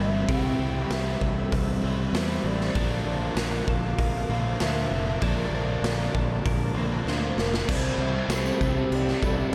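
A straight 4/4 pulse at 97 BPM drives this dreamy, wistful shoegaze and dream pop piece in C major. A raw garage drum kit enters at 0.3 seconds, gritty and up front with a punchy kick, under a growling, overdriven fingered bass and two overdriven semi-hollow guitar riffs, one with lush chorus and the other with reverse reverb. A reedy FM lead carries the melody through chorus and tape echo, a very quiet twelve-string electric guitar adds twangy arpeggios, and a vintage string machine on violas holds warbling sustained chords over Cmaj7 and Bbmaj7, until a drum fill leads at 7.7 seconds to C6 and a jingly tambourine, in a reverb-soaked mix.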